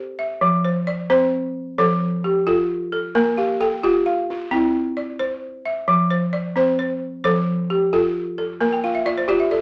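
Set in a small club-like room with a noticeably wet reverb, this short excerpt from a longer piece places two balafons up front, both with a buzzing, woody tone. It is joyful West African traditional music in F major, moving at 88 beats per minute in a straight 12/8 feel. One balafon carries the melody between E4 and C5, its hard rubber mallets giving a dark yet smooth voice. The second balafon, struck with soft rubber mallets, plays dry arpeggios across a broader span from F3 to G5 and sits slightly louder than the melody. The harmony moves from F to Bb5, then C, back to F and again to Bb5, and a balafon fill closes the passage from 8.7 to 9.6 seconds.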